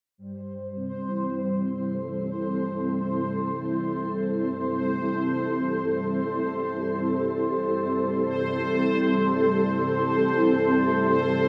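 Expansive and mysterious, this ambient space-music excerpt floats in free time in A minor, where a lush, vintage string machine holds sustained Am7 chords from 0.2 seconds under a filter sweep, its phaser and ensemble chorus shimmering up front, while a resonant, bubbling sawtooth texture of random filter steps sits quieter around C5 from 0.3 seconds, all bathed in a huge, washy reverb with a cassette-tape character.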